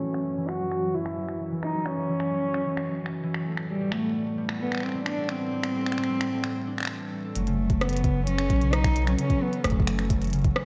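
A dark, intimate cello sings an eerie, melancholic melody up front, with an airy bow and light vibrato, over a warbling, lo-fi pad of sustained chords with 12-bit sampler grit, a ringing fingerpicked harp playing arpeggios, and a glitchy drum kit of finger snaps, clicky hats and rim clicks. Through the opening 7.4 seconds a filter sweeps across the drums and harp, and shimmer reverb haloes the cello, pad and harp inside a worn, cassette-like sound with drifting pitch and echo-chamber ambience. At 7.4 seconds this IDM fragment deepens as a round sine sub bass enters, joined at 7.7 seconds by a soft, overdriven electronic kick.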